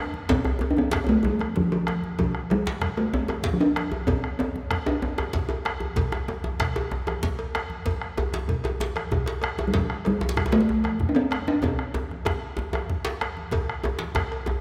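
Bathed in a lush concert-hall reverb, this earthy, festive West African drum ensemble in 12/8 puts a resonant talking drum melody up front until 5.7 seconds and again from 9.7 seconds, beside a round, vintage bombo and a tight, cracking, saturated djembe, while a deep second djembe, bright hard-handed congas and a metallic cowbell sit in the background, with a drum fill arriving at 11.6 seconds.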